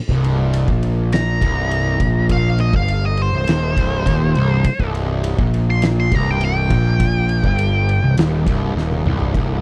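Stoner and doom metal in a straight 4/4 groove, this sludgy, heavy passage is cut from a longer piece and sits on a single C minor chord throughout. A double-tracked fuzz guitar riff and a picked electric bass, overdriven with tube saturation and bright, direct-amped grit, both sit up front from the opening moment. An oversized, low-tuned acoustic drum kit with a punchy kick, fat snare, dark cymbals and a rolled-off top drives the groove, its crash, ride and toms heard in a bright stone room, and a drum fill closes things out at 8.8 seconds. Over this, an octave-fuzz lead guitar enters at 1.1 seconds with a dark, picked solo ringing high above the riff, colored by wah, distortion and tape echo. The recording is dry and close in a 1970s studio manner, with little reverb.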